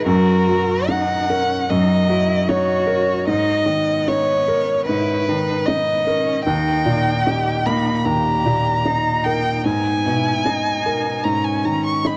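Neoclassical piano and strings in G# minor, this melancholic, reflective excerpt from a longer piece drifts at 75 BPM with a rubato feel, its chords moving from D#m/F# through G#madd9 and D# before returning to G#madd9. A solo violin carries the melody up front with a soft attack, expressive vibrato, portamento and a touch of tape echo, while a distant solo cello sings a second line with its own vibrato and gliding portamento. Also up front, a felt-muted upright piano provides intimate, mellow accompaniment with short sustain and audible action noise, all set in light reverb within a dark production.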